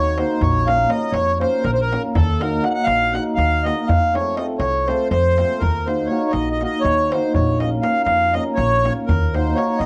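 Bittersweet and fiery, this roughly ten-second fragment of Balkan wedding-band folk in a straight 7/8 at 242 BPM (eighths), set in Eb Dorian with a raised fourth, puts a reedy, slow-beating accordion melody up front beside a mellow, shimmering hammered cimbalom, over a woody pizzicato upright bass and a crisp, deep metal-shell darbuka played with hard hands that sits close and dry in the background, all moving through Bbm, Ebm and F in a moderate studio reverb with the worn, warbly pitch drift of old cassette tape.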